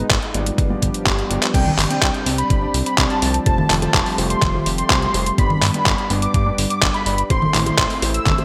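Playful and romantic, this italo disco piece moves in a straight 4/4 feel under a bright 1980s-style digital sheen with light reverb. A thumpy, overdriven electronic kick pairs with an up-front, detuned 8-bit drum machine that supplies congas, crash cymbal, handclaps and hi-hat, its overdrive and gated reverb giving a gritty, small-room character, and a drum fill arrives at 1.1 seconds. Underneath, a fat, thick analog bass built from detuned sawtooths carries the low end with an evolving filter sweep. A smooth, chorused analog pad holds sustained chords in the background, while a dark, mellow grand piano plays stabs with worn 12-bit sampler grit, audible action noise, digital delay and shimmer reverb. At 1.5 seconds a bold, nasal unison lead enters with the melody high above, its vibrato-tinged detuned tone trailed by digital delay and shimmer reverb as the chords move from Csus2 through Fadd9 and G to Am.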